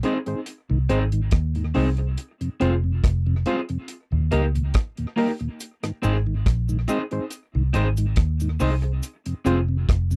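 This roots reggae excerpt sits on a relaxed, straight 4/4 at 70 BPM in Ab major, with a deep, dry drum kit up front: a tight kick, hi-hat and rim click carry the groove from the start. A dark, round, foam-muted fingered electric bass enters at 0.7 seconds, punchy and prominent, anchoring the uplifting, laid-back mood as the chords move through Ab, Fm and Eb. Beneath, a mellow tonewheel organ with audible key click turns through a slow rotary speaker, while a slightly broken-up, picked electric guitar adds dark accompaniment colored by tape echo. An overdriven reed electric piano punctuates with barky, gritty stabs through a combo amp. A close, quiet cabasa joins at 5.6 seconds, and the whole piece has the intimate, nearly reverb-free feel of a 1970s studio session.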